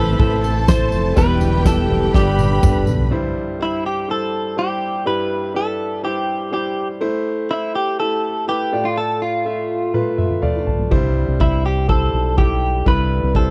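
Uplifting and anthemic, this piano-driven pop excerpt in C major moves at 123 BPM in a straight 4/4, with a clean, compressed electric guitar carrying the melody over a clear, smooth concert grand piano throughout. At the start, a lush violin section adds a second line and a distant, very quiet string section holds sustained chords, joined by a round, punchy fingered bass, a soft-mallet drum kit with a boomy kick and fat snare, and a jingly tambourine in the background, until these drop away by 3.1 seconds, leaving guitar and piano. The drums return with a fill alongside a piano fill at 9.9 seconds and the bass comes back at 10.9 seconds, in a dry, close 1970s-style studio recording.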